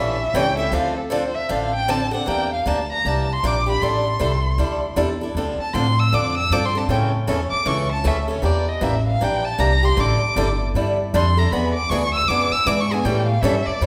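A reverberant recital hall or church surrounds this short cut from a longer performance, with the three string players sitting up front against a lingering, wet tail. It is acoustic string swing in the jazz manouche style, fiery and virtuosic, with a lilting swung eighth-note feel in 4/4. A single bowed violin carries the melody as a solo from start to finish, its tone expressive and smooth on top, shaded with vibrato and sliding portamento. Beneath it, a picked swing-style acoustic guitar sounds bright and boxy with fresh strings, while a pizzicato upright bass on gut strings lays down a woody, thumpy, dark foundation. The harmony moves through minor and dominant colours such as Dm7, Em7b5, A7sus4 and E7, landing on A7 at 13.1 seconds.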